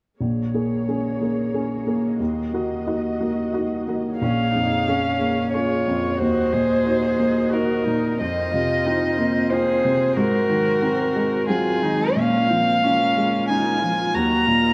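A dark, woody solo violin carries the melody from 4.2 s, bowed sul tasto with vibrato and sitting up front yet sounding distant, while a close, airy-bowed cello with light vibrato adds a soft second line. Underneath, from the opening of this fragment, a felt-muted upright piano plays mellow, short-sustained accompaniment, and a smooth-topped string ensemble holds sustained chords in the background. This fragile, longing neoclassical piece moves in a rubato 3/4 through a moderate concert hall reverb.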